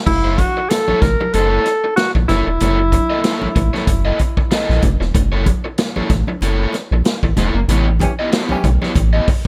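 Gritty and energetic, this funk excerpt at 94 BPM rides a lightly swung sixteenth feel over an F#7#9 chord that shifts to A9 at 7.7 seconds for a band accent. A breathy, subtone alto saxophone carries the melody up front until 4.8 seconds, while an overdriven, picked garage guitar accompanies it, a round analog bass with a dark ring-modulated edge anchors the low end, and a roomy big-band drum kit with a punchy kick drives the groove over ringing congas in the background. A mellow horn section adds a brief second line at 8.0 seconds, all captured dry with little reverb.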